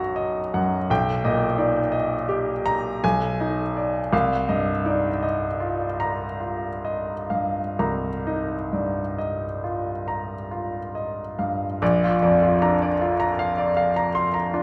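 A lone grand piano opens on a Bmaj7 chord, its tone clear and intimate, with the soft mechanical noise of the action audible close up. This is a short excerpt of impressionist classical solo piano in Eb major, moving in a slow, rubato 9/8 at roughly 41 to 59 BPM counted in dotted quarters, and tuned to A4 = 442 Hz. The mood is luminous and hazy: the harmony drifts from Eb over Cb through Ab5 over Cb to a lingering Cm11, and the piano spans from Bb1 up to C6. Sitting present and up front, the instrument's long sustain blends into a wet recital hall reverb that lets each chord bloom into the space. At 11.8 seconds the music turns to a new passage resting on Bb, and the excerpt breaks off a few seconds into it, partway through a longer piece.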